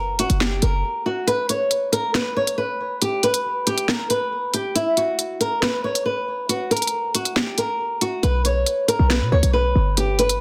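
A half-time drill groove at 138 BPM in 4/4 drives this menacing, cold hip hop excerpt, with an electronic kit of sharp snare, crisp hi-hats and handclaps entering at 0.2 seconds. A fingerpicked acoustic flamenco guitar carries the melody throughout, its finger squeaks audible under a touch of delay. A punchy, sine-based 808-style bass with a noise layer and fast attack sounds over F# at the start, then returns at 8.2 seconds under a Bsus2 chord, all in a dense, heavily limited modern master with light digital reverb.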